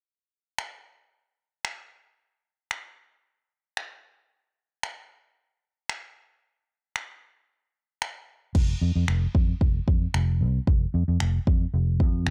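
Dance-pop at 113 BPM in a straight 4/4, confident and driving, cut from a longer piece with a dry, gritty cassette-tape sound and little reverb. A layered, electronic deep house drum kit sits up front from 0.6 seconds, its deep kick layered with finger snaps and crash cymbal. At 8.6 seconds a dark, foam-muted fingered electric bass enters, round and punchy with sidechain pumping, moving between F1 and F2 as the music shifts into its second section.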